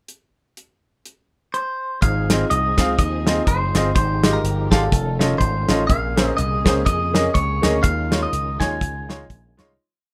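A tight, warm soul drum kit opens this short, uptempo gospel piece at 124 BPM in 4/4 with a swung eighth-note feel, playing a driving two-beat praise groove on hi-hat, kick and snare with a rolled-off top. A clean, twangy electric guitar enters at 1.5 seconds with a bright, picked, motif-based melody of song-like phrases, and at 2.0 seconds the verse arrives with the full band in Ab major. A punchy slap bass, sharpened by an envelope filter, walks and runs beneath with chromatic approach notes. A clear grand piano with audible action noise plays off-beat chords in drop-2 voicings, while a lightly overdriven tonewheel organ with key click and slow rotary speaker, and a lush, bowed studio string section, sit very quietly underneath as sustained pads. Moving through chords such as Fm9/Ab, F7b13, Bbm9 and Eb9sus4, the uplifting, reverent piece carries the intimacy of a rough home demo with light reverb before fading out from 7.8 seconds to its close at 9.8 seconds.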